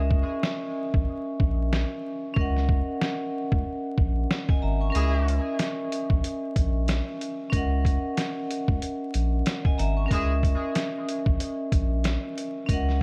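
Reflective and moody, this boom-bap hip-hop excerpt sits in C# dorian at 93 BPM with a swung feel, resting on a single C#m69 chord as a ringing, metallic vibraphone struck with hard mallets shimmers through cassette-tape coloring, while a deep, round dub sub bass and a muffled, compressed sampler-style drum kit with a thumpy kick push up front. The drums enter at 0.1 seconds, the kick drops out briefly from 4.9 to 5.6 seconds, and a distant jazz horn section adds short, roomy stabs at 4.9 and 10.1 seconds, trailed by tape echo. A small room reverb and vinyl crackle give the whole a dusty, intimate air.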